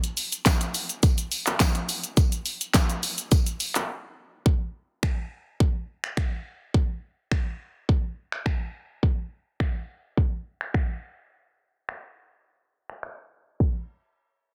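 Pop at 105 BPM in a straight 4/4 feel, this euphoric, upbeat fragment of a longer piece rides on a punchy, layered electronic drum kit that sits up front. The kit gathers kick, a fat snare with soft clipping, hi-hat, crash cymbal, shaker, handclaps and finger snaps, all re-recorded in a small room for a produced, close sound. A jingly, bright acoustic tambourine sits distant in the background, as if heard in a large room, playing only from 0.2 to 3.7 seconds. The opening drop runs until 4.5 seconds, with a brief break from 3.9 seconds before the next section takes over and carries on to the end. The master is dense and heavily limited with a low-pass filter, set in a digital ambience.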